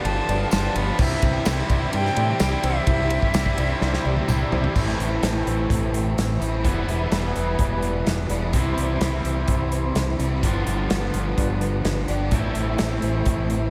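A loose indie drum kit, up front with a tight kick and rolled-off top, sets a straight 127 BPM 4/4 pulse under a growling, round fingered bass in this hazy, melancholic shoegaze and dream pop excerpt in A minor. Two overdriven electric guitars play riffs, one biting and bathed in reverse reverb, the other thickened by ensemble chorus, while a very quiet, dark, shimmering twelve-string acoustic picks woody arpeggios beneath. An airy jazz flute with vibrato and tape echo carries the melody until 4.3 s, joined by a bright, distant tambourine, and a drum fill at 3.8 s opens onto a dreamy, reverb-soaked stretch moving through Am, Em7 and C.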